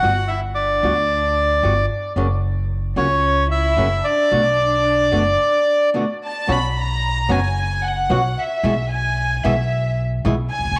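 Tango in B minor at 112 BPM in 4/4, played with a tense, dramatic rubato feel. This excerpt opens with a reedy, dark bandoneon carrying the melody up front, coloured by tape echo, before it drops out at 5.9 seconds. Beneath it, a close, intimate chamber violin section bowed sul tasto with light vibrato and a soft attack carries a second line, while a fingerpicked flamenco guitar supplies acoustic accompaniment. A woody, thumpy upright bass played pizzicato on steel strings sits up front with transformer saturation, anchoring the harmony as it moves from Gmaj7 through F# to Bm7. After a break, the violin section takes a solo from 6.5 seconds over Bsus2 and E/B, all set in a wet spring reverb that lends the small ensemble a lingering, shadowy space.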